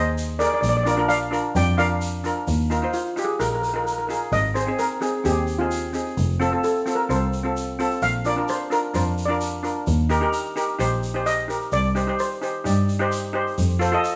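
A carefree, festive calypso at 130 BPM in Eb major opens with two steel pans and a muted double bass sounding together, a tube shaker joining at 0.2 seconds. The melody pan sits in a boxy small room with a warm, medium-rubber-stick tone, while the accompanying pan, struck with hard rubber sticks, rings bright and up front, both carrying the shimmering metallic character of double seconds. Beneath them, a single bowed double bass, played con sordino, gives a dark, veiled line with vibrato and a soft attack, placed close and forward. The shaker adds a grainy, acoustic texture from a distant, large-room space. From 2.5 seconds a steel pan solo begins as the harmony moves through Ebsus2, Ab, F, Bb, Eb and Cm before landing on F7, with the melody pan stopping at 12.6 seconds in this excerpt cut from a longer piece.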